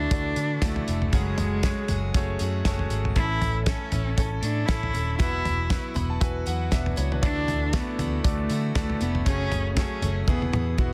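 Anthemic and hopeful, this piano-driven pop excerpt in A major moves at 118 BPM with a light swing. A bowed solo cello with vibrato carries the melody up front over a clear, polished concert grand piano with plate reverb and fills at 2.4 and 5.7 seconds. Beneath them sit a bright picked steel-string acoustic guitar riff in the background, a dark, round, foam-muted electric bass, and a dry 70s drum kit with a fat snare and tight kick that closes on a fill at 10.3 seconds, within a dense, heavily limited modern master.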